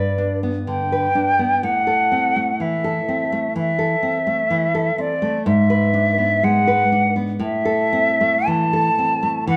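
A romantic duo for flute and classical guitar, this short excerpt cut from a longer piece unfolds at a rubato 62 BPM in 4/4 with a warm, lyrical mood. A bright silver concert flute carries the melody between D5 and A5, its airy, metallic tone shaped by vibrato, a soft attack and lifted highs for an expressive, up-front voice. Beneath it, a nylon-string guitar provides fingerpicked accompaniment from G2 to B4, full-bodied and deep in the classical manner, sitting slightly lower in level. Both instruments play throughout the 9.6 seconds, moving through G, Am, E7/G# at 5.5 seconds, and back to Am. The two sound as though playing live together in one room, bathed in a moderate large-studio reverb with a 1.2-second decay.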